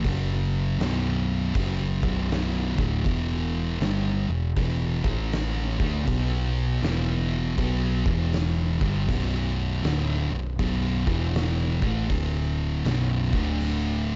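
A dark, warm-toned production with light reverb carries this heavy, hypnotic stoner and doom metal excerpt in B minor at 80 BPM with a swung 4/4 feel, where two thick fuzz guitars grind out the riff, one pushed up front, over a round, punchy overdriven picked bass and an oversized low-tuned drum kit set back in a bright stone room with a fat snare and boomy kick, moving through chords from Bm to E5, A5 and D5 until the drums stop at 13.8 seconds.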